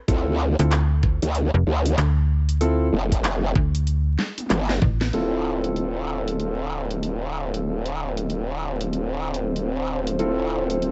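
A growling, wobbling bass with tube saturation and chorus drives this funky, playful glitch hop excerpt in D minor at 95 BPM with a swung 16th feel, joined by snappy, metallic FM slap bass until 5.1 s, a knocking electronic kick until 5.0 s, a drum kit with cracking snare and bright filtered hats, and boxy concert grand piano stabs pumping through delay, before a drum fill and band accent lead into a filter-swept second half where a dark, detuned analog pad enters at 8.3 s over a Dm9 chord amid vinyl crackle.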